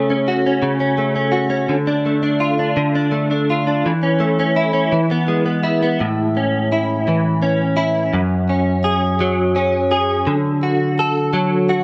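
Pop in 6/8 at a slow 56 BPM in A major, tuned slightly flat to A4 = 436 Hz, this tender, heartfelt passage cut from a longer piece features a solo clean electric guitar, recorded direct, picked, compressed and up front with an ensemble chorus, spanning F#2 to A4 in light reverb as it moves from F#m/C# through Dm, A/E and E before a second section from 6.0 seconds passes through A, F#sus2 and D until it ends at 11.8 seconds.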